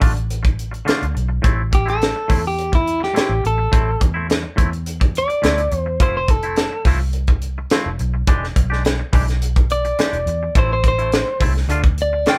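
Soul blues with a straight-eighth feel, this mournful, brooding passage is cut from a longer piece, with a band playing live in one room under light reverb. A tight funk drum kit with a high-tuned snare and tight kick sits up front beside a dark, round, foam-muted fingered bass, while a twangy, clean electric guitar adds fingered stabs. From 1.7 seconds an up-front electric guitar at the edge of break-up carries the picked, compressed melody over chords moving from Dm and Am through Fmaj7 to a tense E7#9.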